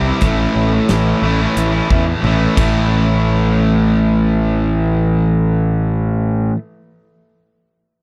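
A cranked stack guitar plays a bright, overdriven picked riff touched by spring reverb in this sunny, swaggering classic rock excerpt, alongside a hollow-bodied, overdriven semi-hollow guitar, both sitting up front. A round, punchy fuzz bass, fingered and overdriven, pushes underneath, while a huge arena drum kit with bright cymbals, a medium-tuned snare and a punchy kick plays from 0.2 s to 2.7 s and throws in a fill at 2.2 s. The sound is dry and close, like a 1970s studio recording.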